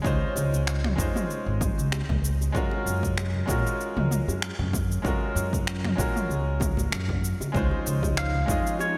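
A clean, bright pedal steel guitar enters at 8.2 seconds, carrying the melody with slide, fingerpicks and volume swells near the close of this brief cut from a longer sunset chillout piece. Underneath, a brilliant grand piano plays the accompaniment through digital delay, slapback echo and shimmer reverb, moving from Dbmaj9 to Gbmaj9 and back to Dbmaj9. A woody pizzicato upright bass anchors the low end, while an overdriven, punchy electronic kick and a layered deep house kit with finger snaps, shaker and toms set a lightly swung 96 BPM groove in 4/4. Congas and bongos sit distant in the background, and an airy, breathy pad with chorus and shimmer reverb enters softly with a slow attack at 7.5 seconds. The mood is blissful and warm, with a lush hall reverb giving the mix a big arena sound.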